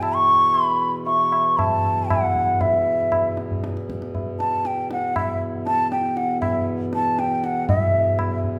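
An airy bamboo bansuri sits up front with tongued, vibrato-laden phrases between E5 and C#6 until 8.4 s, over a reedy, dark pedal harmonium drone and high-tuned tabla with a short ring, in this solemn, introspective Hindustani fragment in raga Bageshri on E, set in 5/4 at 118 BPM with a straight feel that gradually speeds up, all bathed in the lingering reverb of a recital hall.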